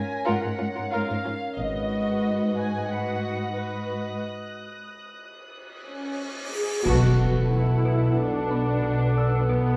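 A straight 4/4 pulse at 91 BPM carries this eerie, tense suspense cue, cut from a longer film score, where con sordino violin sections spin a veiled melody, a lower second line and a faint high texture over ethereal glass-harmonica chords, a ringing harp in the background and a close, bowed cello bass. After a break opens at 4.2 seconds, muted violas slip in with a huge, bright cymbal swell at 5.9 seconds that leads to an impact at 6.9 seconds. There a buzzing, woody hard-mallet marimba riff and very quiet taiko drums join on a Bm7 chord, and distant double basses, heard briefly around 1.6 seconds, return. Wet scoring-stage reverb and a dark production keep the whole cue shadowy.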